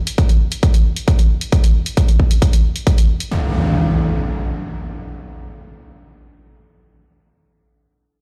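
Uplifting trance with a soaring, bittersweet mood, cut from a longer piece in straight 4/4. A punchy, layered electronic kick drum sits up front with a tape-warmed weight, and a quiet analog hi-hat ticks above it until 3.3 seconds. At that point an electronic impact hits up front and rings out to 7.5 seconds, all heard as if played on a big sound system in a bare room, with a large studio reverb.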